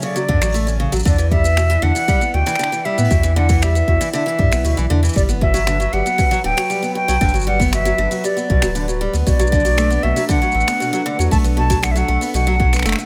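A bright silver flute leads this playful, delicate folktronica excerpt, its airy, vibrato-laden melody sitting up front with a digital delay trailing behind it. Underneath, a picked steel-string acoustic guitar plays arpeggios with a fresh, boxy parlour tone, also carrying a digital delay, while a smooth, warbling analog pad holds sustained chords in the background, softened by a lush chorus. A jazz brush kit adds finger snaps, hi-hat and shaker with a natural studio-room feel. From 0.3 seconds a deep electronic kick and a round, sine-like sub bass join, the bass mellow and up front. The harmony moves gently from Dmaj7 through Em7 and Gmaj7 to Bm7, all set in light reverb with a small-room ambience.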